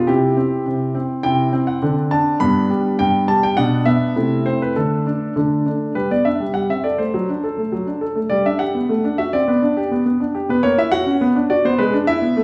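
In a straight two-beat metre, this elegant, graceful classical-period sonatina fragment features a solo grand piano, clear and intimate with audible action noise, placed up front in a natural sound within a recital hall reverb, moving from its opening section into a second one at 6.0 seconds that leans toward B minor before breaking off.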